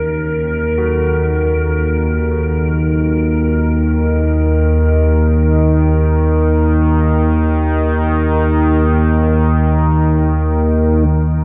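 Drenched in a huge, cavernous reverb with a dark production, this desolate dark ambient drone in Eb minor drifts in free time, cut from a longer piece. An up-front analog drone, sawtooth and wave-folded with chorus and pulse-width modulation, fades in and evolves beneath an icy, crystalline glass pad that carries its own reverb and chorus and fades out by 11.1 seconds. Distant bronze carillon bells play delayed arpeggios in the background as they fade in, ringing until 6.9 seconds.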